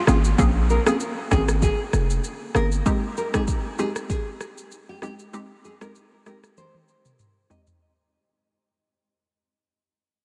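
A fingerpicked, full-bodied nylon-string guitar riff with delay opens this mellow, sultry afrobeats excerpt at 97 BPM alongside a very quiet electronic downlifter, as a hollow, bouncy, detuned square pluck with chorus joins, and a deep-kicked, tape-tinged electronic afro-pop kit of kick, rim click, shaker and toms and a punchy, heavy 808-style bass that stops at 2.8 seconds sit up front over Bbm9 moving to Abmaj7, all within a dreamy haze of huge ambient reverb that fades out across the whole clip, with a drum fill arriving at 6.6 seconds.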